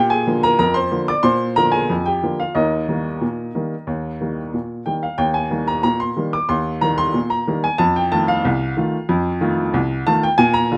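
A woody, vintage-toned upright piano carries this short ragtime fragment on its own, sitting up front with a smooth, short-sustained sound. The mood is playful and cheerful, set in a straight two-beat metre, and the instrument spans a broad range from C2 up to D6. Tuned slightly high at A4 = 445 Hz, it moves from a Bb7 opening to Eb at 2.6 seconds and then to F7 at 7.8 seconds. The passage falls into two matching statements of the same section, the second beginning at 5.2 seconds. A moderate studio reverb adds a touch of room around the notes in this clip cut from a longer piece.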